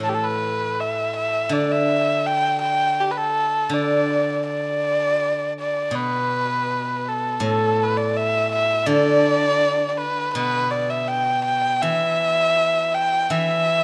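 Rubato in duple metre, this festive yet graceful fragment of Chinese traditional chamber music sets a dark, intimate erhu melody, soft in attack, lightly vibrato-tinged and gliding with portamento under an airy bow, above a ringing, silvery steel-string zither played with fingerpicks in its low register, both parts up front in a moderate recital-hall reverb, with a new section arriving at 5.9 s before the cut at 13.8 s.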